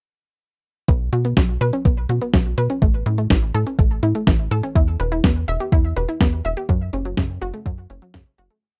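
An overdriven, thumpy electronic kick drives this short, melodramatic and danceable italo disco piece from 0.9 seconds, alongside a punchy, octave-jumping sawtooth sequencer bass, an overdriven 12-bit drum machine playing closed hi-hat and a medium-tuned snare, and a round, detuned analog pluck cycling an 8-step arpeggio through chorus and tape echo, captured in a dry, close 1970s-style studio sound before a fade-out from 6.0 seconds.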